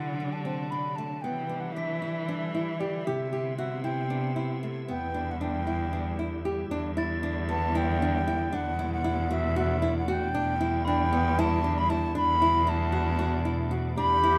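Contemporary instrumental chamber music in a hypnotic, restless 7/8 at 231 BPM in E minor, where an airy wooden baroque flute carries the melody over a focused, up-front bowed cello bass, fingerpicked flamenco guitar arpeggios with audible finger squeak, and a calm, organ-like detuned pad with ensemble chorus holding sustained chords, while a bell-like glockenspiel played with soft plastic mallets rings in the background at 0.0, 7.0 and 10.8 seconds, and a distant, roomy clarinet enters on a second line only at 14.0 seconds before this excerpt cuts off.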